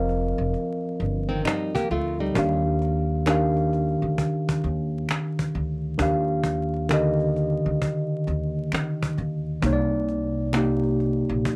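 A worn, slightly out-of-tune tine electric piano with cassette-tape grain and woody, dark pizzicato upright bass open this nostalgic, melancholic lo-fi hip hop excerpt at 66 BPM with a swung 4/4 feel, joined by a snappy, vintage cajon, while a bright, fingerpicked nylon-string guitar with analog delay appears briefly from 1.3 to 2.6 seconds, close, dry finger snaps sit low in the mix, and chords move from F7sus4 to Ebmaj9 to Cm9 in a small room under vinyl crackle.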